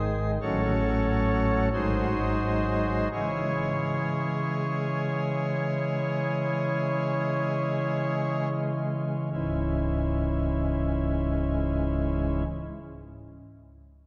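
Rubato in 4/4 at 36-46 BPM and slowing through its first 9.3 seconds, this dark, grave classical chorale in C# minor, cut from a longer piece, features a solo pipe organ on a nasal cornet stop with tremulant and romantic voicing, placed up front and spanning C#1 to C#5 until 12.4 seconds, its F#m/A, G#7 and C#m harmonies hanging in a wet church reverb.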